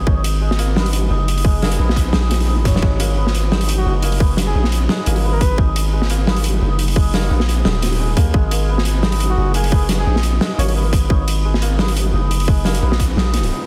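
Tense and dark, this half-time drum and bass passage, cut from a longer piece, rests on a G#madd9 harmony, with a shimmering, hammered santur playing delayed arpeggios throughout while a deep, sine-toned 808-style bass sustains long, decaying notes beneath. An overdriven, tight electronic kick sits up front beside an oversized low-tuned kit whose fat, gritty snare, hi-hat and toms ring in a bright stone room, with a drum fill at 2.7 seconds. A veiled, bucket-muted trumpet in a jazz style surfaces in the background with short delayed phrases at 3.8 and 9.3 seconds, all inside a dense, heavily limited modern master with light reverb.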